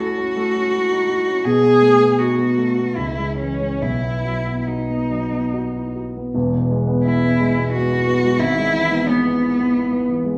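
A single bowed cello sings a lyrical, expressive melody with vibrato and portamento over warm grand piano accompaniment in this romantic classical fragment in E major, a rubato 3/4 moving between 68 and 91 BPM, the duo heard from further back in a reverberant stone room.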